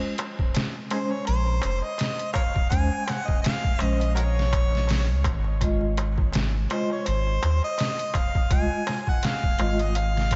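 A dreamy mix soaked in lush hall reverb, dusted with vinyl crackle and muffled at the top end, carries this brooding, hypnotic trip hop fragment at 83 BPM in Bb minor, with a lightly swung sixteenth-note feel. A gritty, compressed, pitched-down sampler-style drum kit sits up front with a thumpy kick, a medium-tuned snare and hi-hat. A clay-shell darbuka played with hard hands stays in the background. A close-miked, metallic vibraphone with fast motor vibrato, tremolo and tape echo provides the accompaniment over a Bbm9 chord that shifts to Fm7/Ab at 5.6 seconds. The lead is a warm, jazz-style harmonica solo entering at 0.9 seconds, full of vibrato, tongue slaps and scooped notes and trailed by dub echo. At 1.3 seconds a deep, round sub bass joins up front, its soft triangle-and-square tone thickened by tube saturation.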